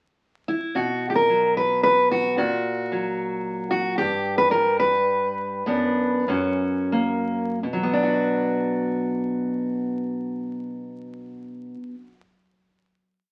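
In a straight 3/4 at 82-112 BPM, this melancholic, reflective folk piece for solo fingerpicked steel-string acoustic guitar, full-bodied with a jumbo resonance and placed up front, traces sparse, song-like motifs in B harmonic minor from 0.5 s, slows from 4.0 s, and comes to rest on a closing B minor chord at 7.6 s, set in a wet club reverb beneath the crackle of a very old 78 rpm record.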